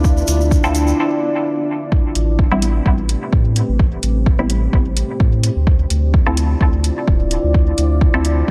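A hazy, hypnotic dub techno excerpt sets a dark, chorused pad with sampler grit and a round sub bass pumping under an overdriven, up-front kick, while a grainy egg shaker and very quiet flickering texture sound only in the opening second. Metallic hats join just after the start, and a muted, phased chord stab with dub echo follows shortly after; together they carry the groove over a shift from Dm9 to Am9 at 1.9 seconds.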